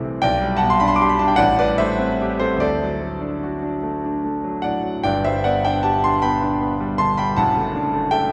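A warm, vintage-toned concert grand piano carries this serene, dreamy romantic nocturne, sitting up front with a smooth touch and deep bass as it moves in a gently rubato 6/8 lilt. The harmony drifts from G/B through Am7 and D, settles on G at 5.1 seconds, then turns toward D/F#, all bathed in the lush reverb of a concert hall. This brief passage is drawn from a longer piece.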